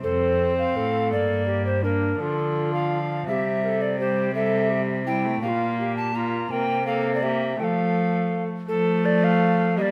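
Courtly and festive, this short cut from a longer piece is a renaissance-style consort dance in triple metre with a straight feel. Two tenor recorders carry the upper parts: the first, mellow and hollow, sings the melody, while the second adds an airy second line, both with a tongued chiff and a close presence. Beneath them a single viola supplies accompaniment with a nasal, period-style gut-string tone and an airy bow. A lone cello anchors the bass with a rich, reedy sound and light vibrato. All four play together throughout, moving through a clear cadential progression that settles back on F near 7.6 seconds before the opening phrase begins again at 8.7 seconds. A moderate recital hall reverb gives the consort a natural sense of space.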